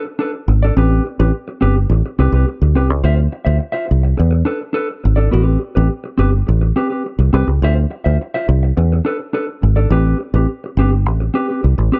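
A mellow, clean electric guitar opens this short disco cut at 105 BPM in A minor, its compressed, fingered chords sitting up front and moving through rich Am9, Dm9 and E7sus4 colours. At 0.5 seconds a foam-muted fingered bass joins, round and direct from the amp and louder than the guitar, giving the glamorous, driving groove its weight. The production is dry and dark, with the highs rolled off.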